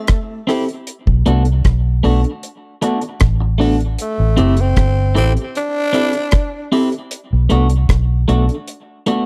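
A dry, close 1970s-style studio sound frames this hypnotic, serious roots reggae fragment in 4/4, where a raspy, gritty tenor saxophone with vibrato and tape echo carries the melody up front until 6.7 seconds over a deep drum kit with a tight kick, hi-hat and rim click, a dark, round, foam-muted fingered electric bass, twangy picked clean electric guitar also fed through tape echo, and reedy, worn electric piano stabs that sound slightly out of tune, lightly overdriven and pulsing with fast tremolo.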